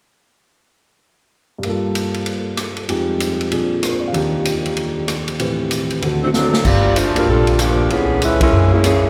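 Awash in a cavernous cathedral reverb, this dramatic, brassy big band swing excerpt in G minor moves at a brisk 191 BPM with a swung eighth-note feel. From 1.6 seconds, an intimate concert grand with deep bass and audible action noise comps alongside a punchy, natural-sounding drum kit of ride, hi-hat, snare, rim clicks, kick and crash. At 6.2 seconds, a tight, close-miked saxophone section with light vibrato takes the melody just before a drum fill, and woody pizzicato upright bass joins at 6.6 seconds, as the chords move from Gm7 through Ebmaj9 and D7 to C#m7 and F#9, punctuated by a band accent.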